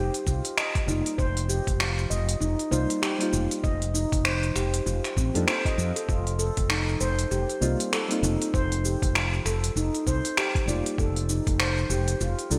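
A ringing, airy handpan plays meditative arpeggios with delay over a full-bodied chord stab pumping with chorus and delay, a round, dark fretless bass, a gritty, thumpy kick and a crisp organic electronic kit of cabasa, finger snaps and hi-hat in gated reverb, together forming this earthy, peaceful organic downtempo excerpt at 98 BPM, with swung 16ths and a bright 1980s-style digital sheen in a lush hall, as the harmony moves from F7sus4 to Ebmaj7/F.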